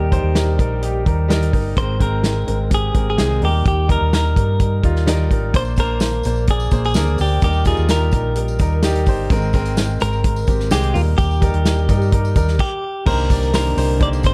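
A dramatic, driving slice of piano-driven pop in a straight 4/4, cut from a longer piece and set in a small room with a dark, warm production. A clear, polished baby grand carries the accompaniment while a bright, twangy clean electric guitar, recorded direct and compressed, picks out the melody over chords moving between Eb, Abadd9 and Bbadd9. Underneath, a round, hollow-body short-scale bass sits up front with an amped, dark tone, joined by a natural country drum kit with a punchy kick, medium-tuned snare, hi-hat and crash. A jingly tambourine slips into the background at 5.5 seconds, and the band halts for a brief stop at 12.6 seconds. When the music resumes on Cm7 at 13.1 seconds, a dark French horn section enters in the background with soft attacks, light vibrato and a smooth top in a classical style.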